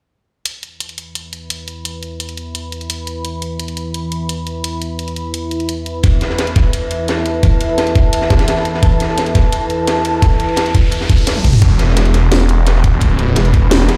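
Dark technical drum and bass at 172 BPM in a straight 4/4, this excerpt from a longer piece feels aggressive and dark. An electronic drum kit with a cracking snare, hi-hat and toms starts almost at once, and from 1.3 seconds a deep, moody ambient pad holds sustained chords with a slow attack, warbling chorus, a sub octave and sidechain pumping. At 6.0 seconds a knocking, up-front electronic kick joins alongside a crunchy breakbeat kit recorded in a studio room, its dark cymbals, high-tuned snare and gritty, rolled-off top filtered thin with a high-pass. A background riser builds from 9.8 seconds, a drum fill lands at 11.4, and then a snarling distorted saw bass arrives on a low E, growling and bright with tube saturation, a moving notch and sidechain pumping. The mix carries a large studio reverb, as if played through a big sound system in a bare room.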